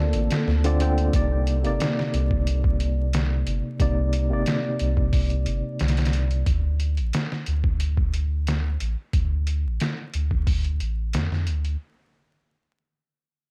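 Cinematic and hypnotic, this trip hop fragment, cut from a longer piece, moves at a straight, unhurried pace over a dark, warm-leaning production dusted with vinyl crackle. A deep, moody pad sits in the background for only the opening moment, its detuned sawtooth layers thickened by chorus, reverb and a gritty vintage-sampler edge before it drops away at 1.1 seconds. A worn, slightly out-of-tune tine electric piano sits up front through a combo amp, its clean tone shimmering with tremolo and tape echo until it stops at 6.5 seconds. Underneath, a round, soft dub sub bass holds the low end throughout, with a filter sweep working on it from 1.1 seconds onward. The sampler-style drum kit is pitched down, muffled and overdriven, pairing a thumpy kick with a medium-tuned snare and hi-hat, while the chords shift from Dm7 to Cm9 and settle on a bare D5.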